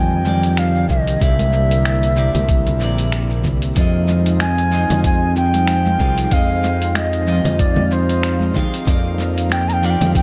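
A relaxed 4/4 groove at 94 BPM swings its sixteenths gently, resting on a thumpy, compressed electronic kick that arrives at 0.9 seconds. Above it, a dusty sampler-style kit adds tape-tinged finger snaps, hi-hat and shaker, while ringing, medium-tuned congas sit close and dry in the background. This smooth sunset chillout piece in F dorian is cut from a longer work, and a growly, up-front fingered electric bass anchors the low end. A pure wooden flute with vibrato and a crisp attack carries the melody through tape echo and shimmer reverb, while a clean, twangy picked electric guitar accompanies it in the background with the same effects. A soft, breathy pad with a detuned sawtooth character and a noise layer holds sustained chords, coloured by chorus, vintage 12-bit sampler grit and shimmer reverb. The harmony moves from Ebmaj7/F to C7, then settles on Fm7 at 3.8 seconds before turning to Ebmaj7, all within a dark, warm production with light reverb.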